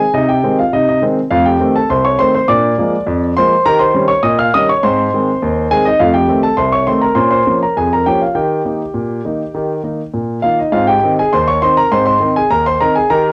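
In a straight two-beat ragtime feel, this playful, jaunty fragment of a longer piece features a solo concert grand piano, up front and intimate with deep bass, long sustain and audible action noise, its cassette-tape tone sitting in a small, homely room as it moves through a bouncy chain of seventh chords before landing home at 10.7 seconds to begin the opening strain again.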